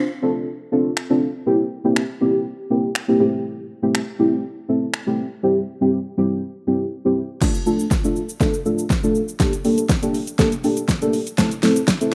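A deep, mellow chord stab opens this driving, energetic dance-pop excerpt at 121 BPM in D minor, its dark, detuned tone with a sub octave treated with chorus, phaser and sidechain pumping as it moves through Dm7, C7, Am7 and C. A punchy, overdriven deep house drum kit enters at 1.0 seconds with kick, fat snare, hi-hat, shaker, finger snaps and crash cymbal, sitting up front beside the stab. From 7.4 seconds a build-up and drum fill carry the chords through Dm, Gmadd9 and Am, all in a rough home demo mix with light reverb.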